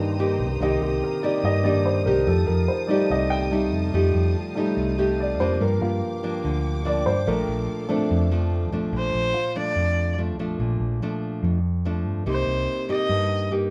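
A moderate studio reverb gives this bossa nova excerpt an open, polished sound, with a sunny, romantic mood at a lively 144 BPM in straight 4/4 and Bb major. A round, amped hollow-body electric bass sits up front, and a dark, fingerpicked classical nylon-string guitar supplies the accompaniment throughout. A vintage-toned grand piano takes the lead first, backed by a lush, even bed of bowed studio strings that drop out at 8.9 seconds. From 9.0 seconds a single bowed erhu carries the melody up front, its earthy, biting tone colored by light vibrato and portamento. The piano continues in accompaniment until 12.3 seconds, as the harmony moves through Cm7, F9, Gm7 and Bbmaj7 before returning to Cm7.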